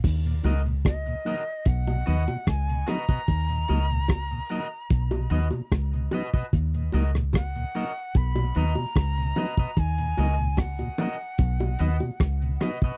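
This dry, close recording has the character of a 1970s studio, with very little reverb on this short cut from a longer roots reggae piece. A cloth-damped drum kit sits up front, its tight kick, rim click, hi-hat and dark crash muffled and gritty with a rolled-off top. Beside it, a deep, round fingered electric bass, foam-muted and amped, carries the low end. A soft tonewheel organ with key click and chorus vibrato, along with a twangy picked electric guitar at the edge of break-up treated with tape echo, fills in the accompaniment over a vamp that alternates between two chords, while low-tuned bongos struck with hard hands add a compressed, saturated percussion layer. From 0.9 seconds, a breathy, bright silver concert flute with vibrato and tape echo carries the melody, giving the laid-back groove a serious cast.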